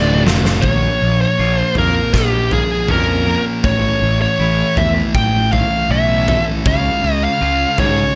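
In a straight 4/4 at 80 BPM that settles into a half-time feel at 0.6 s after an opening drum fill, this dark, angsty quiet-loud alternative rock excerpt sets an up-front, distorted bluesy lead guitar melody over a thick, warm fuzz guitar riff, a second darker fuzz guitar riff in the background that stops at 0.6 s, an overdriven fuzz bass, a huge arena drum kit with a fat snare and punchy kick in a big room that enters at 0.3 s, and a bright, twangy, very quiet clean guitar playing arpeggios, all within light reverb as the chords move from Dm through Bbm and A to C#.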